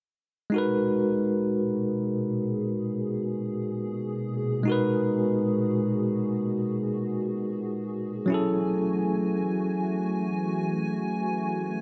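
In free time, this moody, sensual R&B fragment in G# minor lets a bell-like, clean tine electric piano sit up front, sounding accompaniment chords from 0.5 to 11.8 seconds. Alongside it, a hollow, flute-like soft pad with slow attack, long release and ensemble chorus holds mellow sustained chords, moving from G#m9 to F#m9 at 8.3 seconds. A lush hall reverb with a long tail bathes the sound in a wet, spacious glow.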